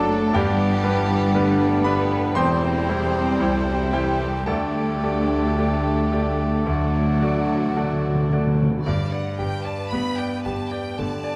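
A bright, up-front baby grand piano with audible action noise carries the melody from the outset of this lyrical, lush romantic excerpt for piano and orchestra in G major, moving with rubato at 54-60 BPM in 4/4. A smooth chamber violin section shares the melody with it, while background studio violins, an airy flute, a very quiet clarinet and a distant oboe add second lines over a vibrato-laden bassoon, lush violas and soft, mellow French horns. A dark tuba, intense cellos and far-off double basses ground the bass, and round, soft-mallet timpani enter at 0.3 s and play a fill from 6.7 s before the woodwinds, horns and tuba fall away near 8.5 s, the ensemble heard in a moderate scoring-stage reverb.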